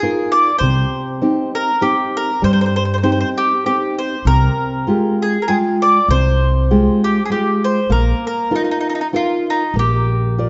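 A lilting 3/4 pulse at 98 BPM carries this Italian folk serenade, its eighth notes lightly swung and its timing loosened by rubato. The mood is sunny and lively. A picked mandolin with round, double-strung tone sings the melody up front, while a dark, fingerpicked classical nylon-string guitar accompanies alongside it, the occasional finger squeak audible. At 0.6 s a pizzicato upright bass joins with a woody, warm sound, sitting prominently in the mix. The harmony moves from Ebsus2 to Cm, then Fmadd9/C at 4.3 s, before settling through Bbsus4 onto Bb. A moderate scoring-stage reverb gives the trio an airy sense of space, and the rolled-off top end keeps the sound mellow in this short cut from a longer piece.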